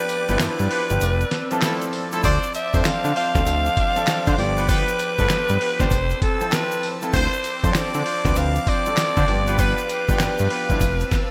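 This new jack swing R&B excerpt moves at 98 BPM in 4/4 with a swung sixteenth-note feel, sounding bouncy and confident as it cycles through G7, Fmaj7 and Dm7. A raspy, gritty alto saxophone carries the melody up front in a pop style, with vibrato and scooped notes. A fat analog bass sits equally forward, its detuned sawtooth and square tones thickened by ring modulation and a filter sweep, alongside a compressed, sampler-style drum kit with a thumpy kick, medium-tuned snare, handclaps, hi-hat and tambourine. A warm concert grand piano with audible action noise and long sustain plays accompaniment through a lush chorus, while a tight horn section adds jazz-style stabs in octaves from 0.3 seconds. Behind them, an airy, evolving pad with a resonant filter swell holds sustained chords, and a grainy tube shaker ticks quietly in a small room. The bright 1980s-style digital production carries light reverb and a touch of studio ambience.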